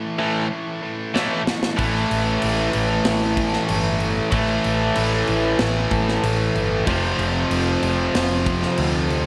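Heard as a big arena sound in lush hall reverb, this driving, menacing hard rock excerpt opens on a low riff from a double-tracked distorted electric guitar, joined almost at once by an up-front overdriven stack guitar and a tight distorted guitar in the background, before a tight metal drum kit with bright cymbals enters on a fill at 1.2 seconds and a dark, round hollow-body electric bass arrives at 1.8 seconds, with the harmony holding on A5 until it shifts to F5 at 6.9 seconds.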